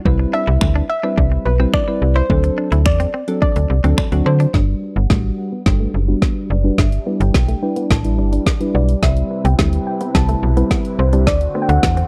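At 107 BPM in a straight 4/4, a deep house drum kit sits up front with a deep kick, woody snare, dark hats and finger snaps, while a snappy, metallic FM slap bass pumps against it, and soft, chorused electric-piano-like synth keys carry a summery, upbeat dance-pop groove in G major through Cmaj7, D7, Gmaj7 and Em7/G. A twangy, clean direct-recorded guitar riff sits in the background beneath a dark, rounded pluck melody touched with slapback echo. At 4.5 seconds a filtered supersaw swell enters behind the mix as a build-up, drum fill and filter sweep carry this short, dry, close recording to its end.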